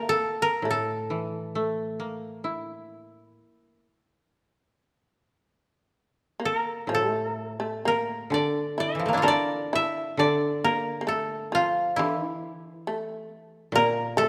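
Japanese traditional chamber music in A miyako bushi, calm and austere, moves in a rubato 4/4 at roughly 57-70 BPM, with an up-front, woody koto carrying the melody on fingerpicks, a powerful, buzzing, plectrum-plucked fretless shamisen adding a percussive second line, and a second dry koto entering at 0.6 s as accompaniment, all set in a moderate reverb as the music passes into a new section at 6.4 s in this fragment of a longer piece.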